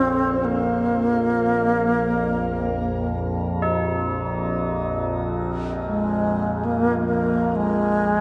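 An alto flute, an overtone-sweeping drone and tubular bells all sound together from the start of this brief, meditative piece of world music, which moves in free time with a spacious, unhurried feel. The alto flute carries the melody between Ab3 and C4, its tone airy and close-miked, up front with a gentle vibrato and soft attack, and it is coloured by shimmer reverb and tape echo. Beneath it the drone holds low between Bb1 and F2, a resonant blend of sawtooth, sine and triangle waves with ring modulation and moving overtones, sustained with a slow attack and long release, thickened by chorus and its own reverb. Tubular bells add a quieter, solemn ringing texture from Eb4 to Bb4, their metallic tone struck with a plastic hammer in a boxy small room and bathed in shimmer reverb. The whole recording sits in a wet church reverb with a 3.3-second decay, giving a dark production that rolls off everything above 10.6 kHz, and the 8.2-second passage is cut from a longer piece.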